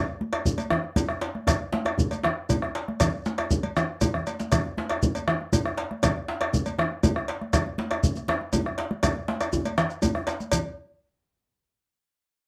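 Earthy and powerful, this excerpt of West African traditional drumming in a straight 12/8 gathers speed throughout. Up-front round bombo, metallic cowbell, rattling medium-tuned djembe, damped high-tuned congas played with soft hands and a grainy, mellow shekere all enter within the first half-second, with a drum fill at 4.1 seconds, under moderate studio reverb.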